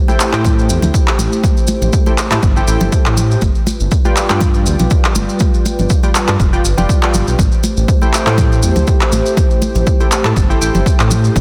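Afro house at 121 BPM in A minor, this short cut from a longer piece feels warm and driving, with a light 16th-note swing. Close and dry congas played with hard hands in the background and grainy, mellow maracas in a small room enter at 0.1 seconds, followed by layered, overdriven electronic handclaps at 0.2 seconds, before a punchy, overdriven electronic kick lands up front at 0.4 seconds. A smooth, mellow synth bass with a fast attack holds the low end and pumps against the kick, while round, detuned analog keys play decaying stabs through chorus and dub echo, their tone shaped by a filter sweep. Beneath them, a deep, moody analog pad with a slow attack, sub octave and ring modulation sustains chords in the background, also breathing with sidechain pumping. The harmony moves from Am7 to G7 at 3.4 seconds and back to Am7 at 7.4 seconds, all inside a dense, heavily limited modern master with light reverb.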